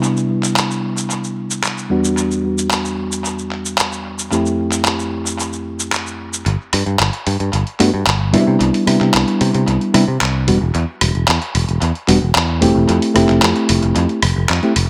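A mellow, reedy electric piano opens this sunny, groovy nu-disco piece at 112 BPM in a straight 4/4. It plays Cmaj9, Em9 and Fmaj7 chords through its built-in speakers, sounding clean under a low-pass filter and analog delay. Beside it, a dusty soul sampler-style kit with cabasa, handclaps, hi-hat and rim click sounds gritty and compressed, with high-pass filtering and its own analog delay. At 6.5 seconds a build-up begins, and a picked electric bass enters up front with a growly, direct tone. The harmony briefly drops out before returning to Cmaj9, Em and Fmaj7. A moderate spring reverb and an echo-heavy mix give the sound a roomy glow, and the passage is cut from a longer piece.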